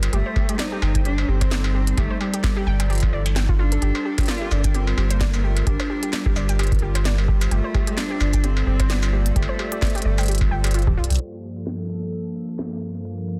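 Dense, heavily limited and low-pass filtered in a digital ambience, this intricate, melancholic IDM fragment rides a swung groove, setting a dark, bowed cello melody with vibrato and portamento over a hollow, flute-like pad with chorus, a warbling, lo-fi pluck arpeggio with chorus and tape echo, a round analog bass sitting up front, a dry, deep electronic kick and an industrial kit of clanging snare, smooth hats, shaker and struck metal, until a drum fill at 11.0 seconds gives way to a filter sweep as the pad and kit carry on alone to 13.4 seconds.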